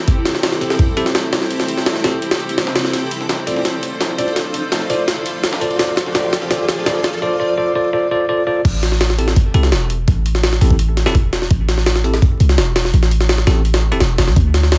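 Vinyl crackle and a light digital ambience frame this raw, nostalgic drum and bass excerpt at 168 BPM in A minor, where a blurred, evolving granular pad holds Am7 and Dm7 chords beneath bell-like tine electric piano stabs roughened by 12-bit sampler grit, a low-pass filter sweep and dub echo. Two pitched-up, compressed sampler-style drum kits drive the build-up: an up-front jungle kit with a thumpy kick and high-tuned snare, and a very quiet, tape-warm breakbeat layer, while a drum fill runs alongside a faint electronic riser. At 8.7 seconds the drop lands on Am7 as a deep, boomy 808-style bass with a mellow sine tone enters up front beneath the jungle drums and the piano.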